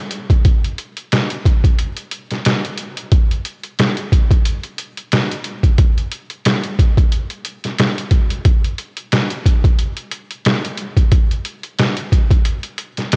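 A lightly swung 90 BPM hip hop groove in 4/4 carries this dark, moody excerpt, where a lone sampler-style trip hop drum kit of thumpy kick, medium-tuned snare and hi-hat, pitched down, compressed and gritty with cassette tape grain, sits up front in a light reverb from 0.1 to 13.2 seconds, with the rough character of a home recording on cassette.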